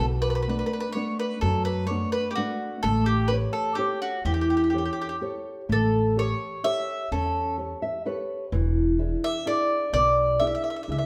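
A mellow, double-strung mandolin carries the melody up front in this passionate, romantic excerpt of an Italian folk serenade at 127 BPM in 3/4, over thumb-plucked nylon-string guitar with audible finger squeak (which adds a brief fill at 7.6 seconds), and a woody pizzicato upright bass, with the band playing live in a stone room with a lingering reverb as the harmony moves from Bm7 to A7 to E7.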